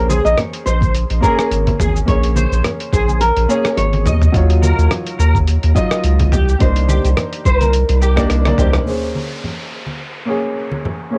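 The round analog bass sits up front in this short excerpt of wistful, relaxed sunset chillout, deep and dark with a nasal, filter-plucked tone and a fast attack, carrying a loose, swung groove until 8.8 seconds. A woody, full-bodied nylon-string guitar with old strings carries the fingerpicked melody through tape echo and vintage sampler grit, while a baby grand piano with short sustain plays the accompaniment and rings on to the end. A slightly broken-up, twangy electric guitar picks arpeggios softly through ensemble chorus and echo. The gritty, compressed sampler-style kit brings cabasa, hi-hat, rim click and toms, joined by a thumpy electronic kick, and close, dry congas ring in the background with hard hands. After a drum fill and a band accent near 8.7 seconds, the closing moments hold piano, congas and an electronic downlifter, all heard in a small booth on a cassette home recording over moody ninth chords.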